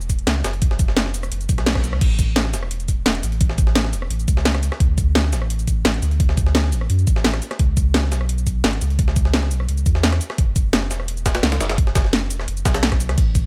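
Warm and dreamy, this excerpt of liquid drum and bass runs at 172 BPM in a straight 4/4, cut from a longer piece and built around a drop that lands at the start and again at 2.0 seconds, with a band accent at 1.7 seconds. A deep, round sine sub bass with a fast attack sits up front, holding sustained notes between E1 and F#2 for the full length. The main drum kit is electronic and layered, pairing a cracking snare and metallic hats with crash, ride, rim click and shaker, all carrying a tape-warm tone from being re-recorded in a small room. Beneath it, a sampler-style breakbeat kit adds a gritty, compressed snare tuned high and hi-hats, both thinned by high-pass filtering. A knocking electronic kick, the loudest of the drum parts, shares that small-room re-recording and sits up front, and the whole mix stays fairly dry with little reverb.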